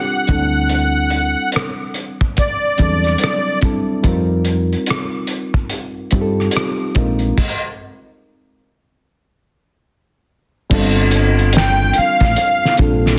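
This introspective, smooth neo-soul R&B excerpt in G minor opens with a shimmering musette accordion carrying the melody, up front with a slapback echo, over a bright, clean electric piano treated with phaser. At 72 BPM in 4/4 with a swung sixteenth-note feel, a woody fretless electric bass, dark and round, enters alongside a cloth-damped, thuddy drum kit that sounds muffled and lo-fi, with a fat, gritty snare given soft clipping, a tight kick, hi-hat, rim clicks, finger snaps and crash cymbal. The accordion falls away after its opening phrase while the harmony moves through suspended ninth chords from D9sus4 to F9sus4 and Bb9sus4, and a stop arrives at 7.4 seconds. A new section begins at 10.7 seconds on G9sus4, and the reedy accordion returns briefly. Light small-room ambience surrounds the parts, and the whole is sealed in a dense, heavily limited modern master.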